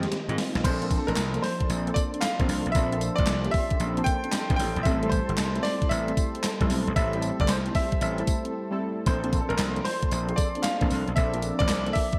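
New jack swing R&B at 114 BPM in 4/4, bouncy and slick, with a 65% swing on the sixteenths and a bright 1980s-style digital production. A gated 80s drum machine sits up front with a thumpy kick, an overdriven edge and a gated reverb snare, joined by handclaps, hi-hat, tambourine and crash, and it opens with a short drum fill before a break between 8.5 and 9.1 seconds. A gritty, punchy slap bass, overdriven and direct, holds the low end up front. A brilliant baby grand piano carries the melody with a short sustain, while analog keys with chorus and tube saturation play round, detuned sawtooth accompaniment. Dark synth brass stabs with chorus and a pure, vibrato-laden flute section holding sustained chords sit in the background, over a progression that moves from Abmaj7 to Bbmaj9 and Am7 before returning to Bbmaj9 in this excerpt cut from a longer piece.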